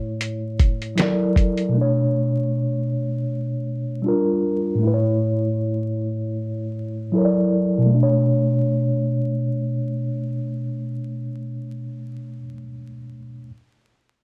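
Hazy and melancholic, this lo-fi hip hop excerpt in B minor sits at 78 BPM with a light 16th-note swing, accompanied by a mellow, clean tine electric piano that is low-pass filtered and up front, moving through chords such as Bm9, Gm7 and F#7alt. A sampler-style drum kit, compressed, pitched down and tape-warm, with a thumpy kick, fat snare and hi-hat, plays only from 0.2 to 1.7 seconds. A filter sweep shapes the piano until 7.9 seconds, where a new section begins, all set in a wet studio reverb with vinyl crackle.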